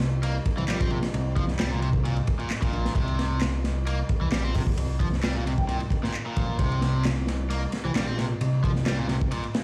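Heard through a big sound system in a bare room, this short cut from a longer breakbeat track carries vinyl crackle and a large studio reverb that give it a gritty, funky air. The crunchy acoustic drum kit is up front at 132 BPM in a straight 4/4, with a tight kick, medium-tuned snare, hi-hat and dark ride cymbal, all saturated and rolled off at the top. Overdriven, layered electronic handclaps sit beneath the kit. A fat analog bass, thick and detuned with a wave-folded sawtooth edge and a filter sweep, holds low between Bb1 and C2, while a cranked stack guitar plays a bright, picked riff, overdriven and roughened by 12-bit sampler grit and digital delay. For a brief moment at 5.6 seconds, an airy, hollow wooden flute sounds a single G5 in the background, its vibrato filtered through a small-speaker tone. A short break arrives at 9.3 seconds and runs to the close.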